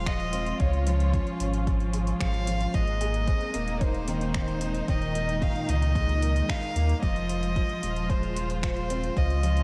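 Piano and strings electronica in F minor at 112 BPM, this melancholic, intimate piece sets a dark, lightly vibrato violin melody with an airy bow and tape echo over woody sul tasto string chords and a round sine sub bass, both pumping to the sidechain, while a vintage grand piano riff with audible action noise, analog chorus and tape echo moves through Fm, Db, Abadd9 and Ebsus4, and from 0.1 s an overdriven deep kick and a drum kit of metallic hi-hats and finger snaps, re-recorded in a large room, sit beneath a dreamy mix soaked in lush hall reverb.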